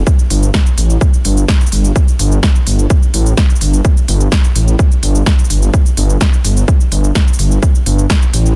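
A menacing, detuned sawtooth bass sits up front from the start, saturated and sidechain-pumping with an evolving filter swell between G1 and A1, driving this dramatic, hypnotic melodic techno excerpt at 127 BPM alongside a punchy, overdriven electronic kick and a deep house kit of smooth hi-hats, shaker and a layered snare, all in a dry, dense, heavily limited modern master.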